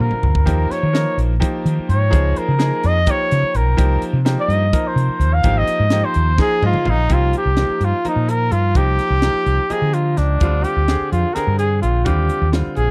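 A dry, close 1970s-style studio sound frames this funky, slick electric jazz fusion, cut from a longer piece, in 7/8 at 253 BPM: a vintage, up-front trumpet with light vibrato and scooped notes plays a jazz-style solo for the first 7.1 seconds, over a dark, round fretless electric bass, a brilliant grand piano with audible action noise and long sustain that adds a fill from 6.4 seconds, and a crisp, airy drum kit with a high-tuned snare and tight kick, while the chords move from Eb9 to Ebmaj7.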